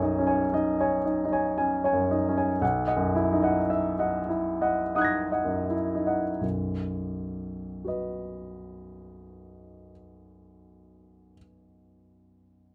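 In a rubato 3/4 drifting between 39 and 58 BPM, this hazy, luminous impressionist classical fragment, cut from a longer piece in B major, features a clear, polished baby grand piano up front and present across a range from B1 to A#6, easing through B69 and F#13/B chords as it slows over the first 6.4 seconds before settling onto a plain B chord, all captured by close, detailed microphones in light reverb.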